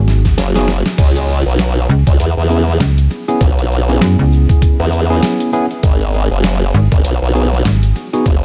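This funky, playful glitch hop excerpt in C# minor opens with a worn, slightly out-of-tune tine electric piano jabbing out stabs over a snappy, metallic FM slap bass, while a sampler-style kit drops a fill in the first second and settles into a 99 BPM groove with a 16th-note swing. A thumpy, tape-warm kick sits up front beside a formant-filtered wobble bass that enters at 0.4 s, its bright, chorused pulse-and-sine tone carrying tube saturation, and a grainy, close tube shaker keeps time beneath. The electric piano's lightly overdriven combo-amp sound carries 12-bit sampler grit, sidechain pumping and delay as the harmony moves from G#m7 to C#m7 and back to G#m7 at 5.8 s, all set in a light digital ambience.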